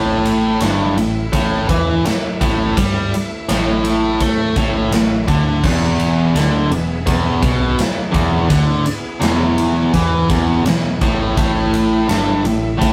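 A tight, bright distorted guitar riff sits up front, double-tracked and picked low, driving this swaggering, gritty blues rock and southern rock excerpt at 84 BPM in a straight 4/4, moving from A5 to E and back to A5. A big acoustic drum kit enters at 0.3 seconds with a punchy kick, medium-tuned snare, and bright crash and ride cymbals, while a dark, round, foam-muted electric bass holds down the low end. Very quiet beneath them, an overdriven tonewheel organ sustains thick chords with key click, percussion and a slow rotary speaker, all set in a rough rehearsal-room sound with tube saturation and a wet studio reverb.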